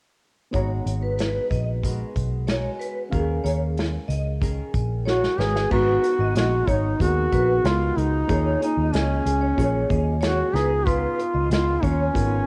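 Indie and bedroom pop in a mellow, wistful mood, built on a cassette-tinged home recording where a fingerpicked flamenco guitar with a slight warbly drift and a reedy electric piano with fast tremolo sit in the background. A round, foam-muted electric bass stays up front beside an unplugged kit with dark cymbals, tight kick and bundle sticks, while a bright, ringing vibraphone with tape echo carries a second line. A close-miked duduk enters up front at 5.1 seconds, alongside a drum fill, with a folk-style vibrato melody, its warm tone softened by analog chorus and tape echo.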